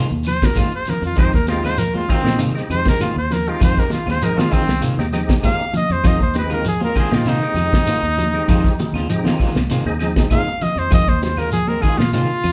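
Hypnotic and driving, this straight 98 BPM afrobeat groove in F minor rides a single Fm7 chord while an up-front trumpet with vibrato and a punchy, smooth top solos from 0.3 seconds. Beneath it sit a dry, cloth-damped drum kit with a fat snare and tight kick and a round, foam-muted fingered bass, while a dark, clean guitar plays arpeggios and a slightly broken-up second guitar with tremolo adds stabs in the background. Grainy shekere, bright high-tuned congas and very quiet woody claves fill out the percussion, and a percussive tonewheel organ with key click, chorus vibrato and slow rotary speaker enters at 1.2 seconds and stops at 10.5 seconds, the band playing live together in a moderate large studio reverb.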